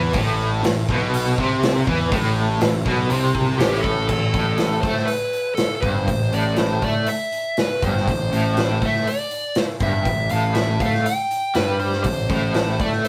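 Hard rock in A minor at 121 BPM, this driving, aggressive passage is cut from a longer piece and rests on an Am chord. A bright, picked riff opens it, shared by a scooped, compressed distorted guitar and an overdriven semi-hollow guitar with tremolo, while a double-tracked high-gain guitar thickens the background until 4.1 seconds. A growly fuzz bass, both direct and amped, runs underneath, and a big acoustic drum kit sits up front with a punchy kick, medium-tuned snare, hi-hat and crash cymbal. At 3.6 seconds a dark, smooth lead guitar enters with an overdriven melody carrying slapback echo, taking the foreground just before the second section begins at 4.1 seconds. The sound is a rough rehearsal-room capture with moderate studio reverb.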